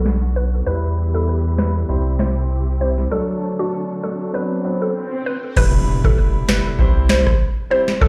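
Heard through a big sound system in a bare stone room, with light reverb and a low-pass filter, this sultry, bouncy dancehall clip has a filter sweep running through the first 5.6 seconds, with a break from 3.1 seconds. A booming, overdriven analog drum machine with a deep kick and crisp snare sits up front beside a thick, saturated sub bass, while a woody, warbling FM mallet-like pluck carries the melody through chorus and digital delay, and a clear grand piano with audible action noise joins at 0.7 seconds. Dark, lush bowed strings pump in the background until 5.6 seconds, when an electronic swell gives way to a background impact.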